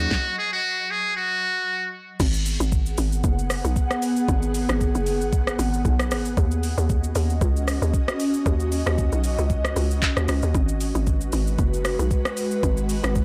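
A blown-out, overdriven recording with light digital ambience frames this late-night, soulful amapiano cut from a longer piece, moving at 115 BPM in 4/4 with a gentle sixteenth-note swing in G# minor. A muted trumpet opens with a brief jazz-style solo phrase, buzzy and thin with light vibrato and scooped notes, sounding distant and roomy through tape echo before it falls away at 1.9 seconds. Beneath it, an ethereal pad of detuned unison saws holds sustained chords throughout, its slow attack and long release softened by ensemble chorus, phaser and a mellow filter. The electronic drum kit sits up front with a knocking kick, fat snare with soft clipping, metallic hats, handclaps, rim clicks, shaker and crash cymbal. After the opening stop, the drop arrives at 2.2 seconds as a hollow, bouncy log drum bass enters with fast-attack, decaying notes over a G#m7 to D#m7 chord cycle.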